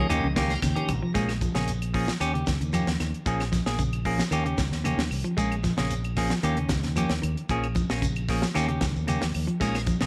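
Up front, a dark, hollow-body semi-hollow electric guitar plays scooped stabs over a hypnotic, driving afrobeat groove at 114 BPM in a straight 4/4. The passage opens with a short fill from the tonewheel organ, which has a piping, lightly overdriven tone with key click and a slow rotary speaker, and the organ returns only briefly near 9.6 seconds. Beneath, a clean electric guitar sits in the background playing arpeggios with spring reverb, while a fingered electric bass sounds round and punchy. A tight funk drum kit, dry with a high-tuned snare and tight kick, drives the groove on hi-hat, kick and snare. It is joined by woody claves set back in the mix, a grainy, mellow shekere and bright, very quiet congas with a thin skin, the shekere and congas sitting distant in a large room. The harmony alternates steadily between Eb7 and Bbm7 throughout this section of a longer piece, all under light reverb.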